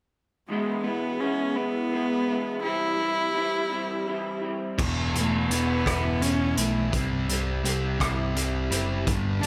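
Quiet-loud alternative rock in a slow 6/8 at 56 BPM, bittersweet and cathartic, cut from a longer piece: a rich, smooth bowed cello with vibrato carries the melody from 0.5 s through a digital delay, over dark, lo-fi, slightly broken-up arpeggios from an electric guitar through a small old amp with analog chorus, moving between E and C. At 4.8 s the loud half arrives as an overdriven semi-hollow guitar plays a hollow-bodied riff bathed in spring reverb, a bright, growly picked bass digs in, and a raw garage drum kit hits with a punchy, saturated kick, crash, hi-hat and rim clicks, its top end rolled off. The whole sits in a moderate large studio reverb blended with small room ambience, with the cello, riff guitar and drums up front.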